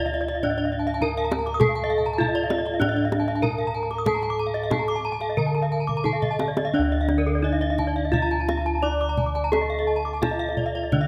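Up front in this shimmering, hypnotic passage of Balinese gamelan, the bronze bossed gongs carry the bass from D2 to A4-30c, their round, mellow, beating tone softened by padded beaters. Above them, a bronze metallophone struck with a horn mallet plays the melody between D4 and D5, its bright, ringing voice paired with a second horn-mallet metallophone that spins airy arpeggios. A third metallophone, played with a wooden mallet, adds its own arpeggios in a close, dry and full sound, while the paired tuning gives all three metallophones their shimmering beats. The kendang, played with soft hands, sounds tight, close and dry, and its fill from 5.9 to 6.7 seconds leads into a new section at 6.7 seconds. Set in D pelog at a straight 4/4 of 86-102 BPM, this cut from a longer piece is captured with detailed close microphones inside a moderate concert-hall reverb.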